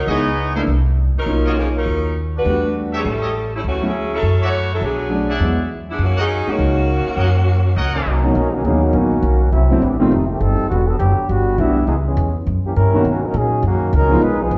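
A swinging, brassy big band swing piece in F# major at 204 BPM opens with the saxophone section carrying the melody with vibrato over a woody pizzicato upright bass, while an open-sounding concert grand piano accompanies with deep bass and long sustain and a brilliant, vintage-toned trumpet section adds tight stabs. The trombone section enters with a second line at 7.9 s and takes a solo from 8.4 s, its tone clear and tight with light vibrato. A large studio reverb places the band further back in a roomy space.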